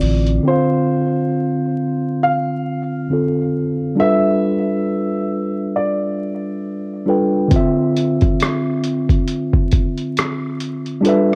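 Lo-fi hip hop at a slow, swung 68 BPM in D dorian, nostalgic and reflective, cut from a longer piece and wrapped in light digital ambience, vinyl crackle and warbly, worn tape drift. A slightly out-of-tune tine electric piano carries the Dm7, G13 and Dm9 chords throughout, while a dark, woody upright piano sings a mellow melody with tape echo from 0.5 to 7.0 seconds. A muffled, pitched-down sampler kit with gritty 12-bit hi-hat, rim click and thumpy kick ticks in briefly at the start, then returns at 7.5 seconds, its kick dropping out for the final moments.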